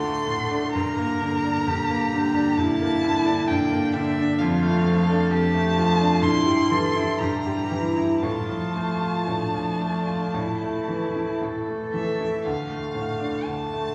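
Heard from set back in a wet concert hall with a 2.1-second reverb tail, this solemn, yearning fragment of a slow romantic piano trio movement in D minor moves with rubato at 53-67 BPM: a bright, brilliant grand piano sits up front with audible action noise and long sustain beneath a rich, focused violin melody sung with vibrato between E5 and C6, while a smooth, even, distant cello second line stops at 12.5 s as the harmony settles on D minor.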